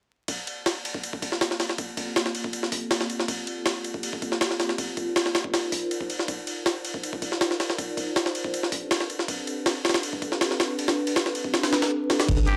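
This drum and bass cut with a jungle edge has an atmospheric, raw mood, set in a straight 4/4 and heard as a short excerpt from a longer piece. A jungle sampler-style drum kit arrives at 0.3 seconds and sits up front, its compressed, pitched-up hits built from a thumpy kick, medium-tuned snare, hi-hat, ride and crash, with high-pass filtering on every piece. From 1.2 seconds a warbly, nostalgic pad holds dark, detuned sustained chords moving through Gm11, Cm11 and Am11, coloured by chorus, tremolo and its own reverb, while a filter sweep runs across it. Only near the very end does a round, soft dub sub bass drop in on a deep G1, joined at 12.5 seconds by a nasal trumpet with a straight mute playing a scooped, jazz-style note with vibrato. The whole recording carries a dry, gritty hardware character with light reverb and a layer of vinyl crackle.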